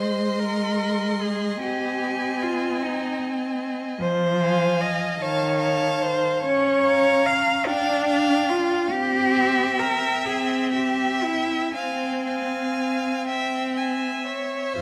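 In a rubato 6/8 at roughly 38-51 BPM, counted in dotted quarters, this slow romantic movement for string quartet sets an elegiac, melancholic tone, moving from Ab major into F minor at 4.0 s. The first violin carries the melody with vibrato, soft attacks and expressive portamento, while a clear, focused second violin sings its own line from a distance; the viola, close and up front, adds warm accompaniment with expressive portamento, and the rich, smooth cello anchors the bass with an even tone. A moderate recital hall reverb surrounds this passage, which is cut from a longer piece.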